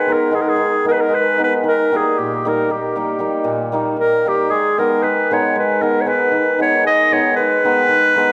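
A clear, classical-style clarinet carries a virtuosic, bittersweet Balkan folk melody in a straight 11/8, joined from the first moment by a shimmering, ringing hammered dulcimer that supplies the accompaniment below it. Both instruments sit up front, yet the whole short fragment is heard from further back in a wet concert hall, its long reverb lending the playing a spacious glow as the harmony moves from G#m to D# at 1.7 seconds and back to G#m at 4.5 seconds.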